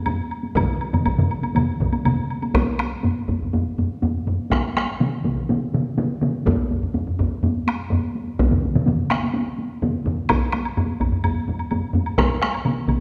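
Layered taiko ensembles, some struck with heavy sticks and others with hard sticks, drive this powerful, ceremonial Japanese traditional drumming at 124 BPM in a straight 4/4, pushing faster throughout the 13-second excerpt. One group sounds compressed and saturated while the others sit up front, one miked close and two carrying live room ambience, all within the generous reverb of a recital hall. A dry, woody woodblock clicks through the opening until 2.5 seconds, then returns at 10.3 seconds as the drumming keeps accelerating.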